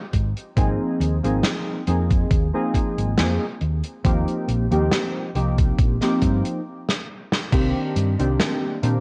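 Vaporwave with a woozy, hazy mood: warbly, detuned lo-fi synth keys with lush chorus, vintage 12-bit sampler grit and analog delay float up front over a round, dark hollow-body electric bass, a thumpy sampler-style kick and a distant, roomy soul drum kit with dark cymbals and gated reverb, the mix carrying a small-room, cassette-tape haze as the groove stops at 6.7 seconds for a drum fill before moving into a new section at 7.5 seconds.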